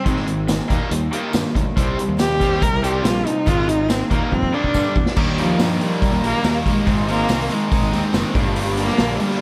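A big arena sound with lush hall reverb frames this gritty, swaggering classic rock piece at 141 BPM: an up-front bowed cello carries the melody with expressive vibrato and portamento, riding over slapback-echoed crunchy and overdriven electric guitar riffs, a round, punchy fuzz bass, a very quiet, full-bodied steel-string acoustic guitar, a vintage drum kit with dark cymbals that plays a fill from 4.3 to 5.2 seconds, a jingly tambourine in the background, and a double-tracked cranked stack guitar that joins at 5.2 seconds.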